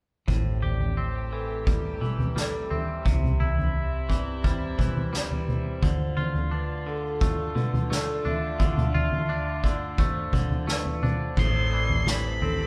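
Post-rock at 87 BPM in 4/4 with a soaring, cinematic mood, this short cut from a longer piece has a distant chamber string section holding rich, reedy sustained chords over Am7, Cmaj7 and Dm while a bright, twangy clean guitar and a ringing vibraphone with medium motor vibrato spin arpeggios above a round, dark hollow-body bass. A roomy soft-mallet drum kit with a punchy kick sits up front, and the whole band plays live in one stone room with moderate reverb. At 11.4 s the harmony shifts to Amadd9 as a dark octave-fuzz lead guitar enters up front with a brief, high, distorted melody.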